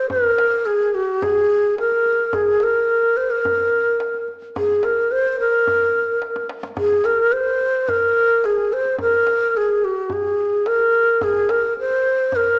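A breathy, mellow ney carries the melody up front from the very start, its end-blown reed tone sounding with soft attacks and vibrato between Gb4+44c and C5. Beneath it, a deep tombak, close and dry, sits far lower in level, with a drum fill from 6.2 to 6.8 seconds. This soulful, longing Persian modal piece moves at a straight 108 BPM in 4/4, tuned to A4 = 439 Hz, with a moderate recital-hall reverb and a small-speaker sound, cut from a longer piece.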